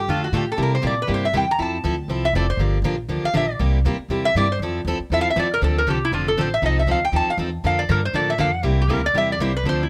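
A metallic, nasal lap resonator guitar, played with fingerpicks and a steel bar, takes an up-front slide solo across this lively, playful excerpt of acoustic jazz manouche swing at 238 BPM in F major, backed by a woody pizzicato upright bass and a full-bodied picked steel-string jumbo acoustic guitar with audible finger squeak, all captured close and dry through two passes over changes moving from Dm through C7 and Fmaj7 to Bbmaj7.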